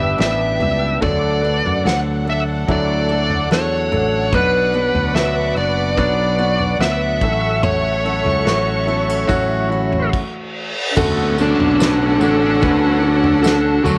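Tender and emotional, this pop ballad moves at an unhurried, straight-feel pace in four, heard as a short cut from a longer piece. An overdriven lead guitar, smooth and dark and placed up front, carries the melody over a clear concert grand piano whose intimate sound lets the action noise through, while a fretless electric bass sustains growly low notes beneath. Muted symphonic strings hold veiled, con sordino chords with a lush vibrato, and a picked steel-string acoustic guitar adds very quiet, woody arpeggios with the dull sheen of old strings until about 10.7 seconds. A natural country drum kit with a fat snare and punchy kick plays in a small, lightly reverberant room. The band then halts briefly around 10.1 seconds as an electronic reverse cymbal and downlifter sound in the background. Just before the next section, at about 10.9 seconds, a dark chamber cello section enters with expressive portamento. 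At 11.0 seconds the music returns to the home chord, and a jingly tambourine set back in the mix joins in.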